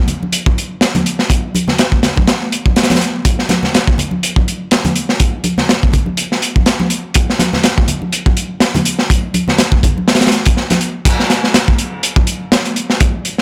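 Energetic and funky, this breakbeat cut from a longer piece runs at 123 BPM in 4/4 with a light swing on the sixteenths. An up-front, gritty drum kit with a saturated, rolled-off top, dark cymbals, a tight kick, a medium-tuned snare, hi-hat and crash drives the groove, while bright, close, dry congas sit lower in the mix until they stop at 10.8 seconds. At 11.1 seconds the music drops to the drums alone in a light reverb, carrying on to 13.4 seconds.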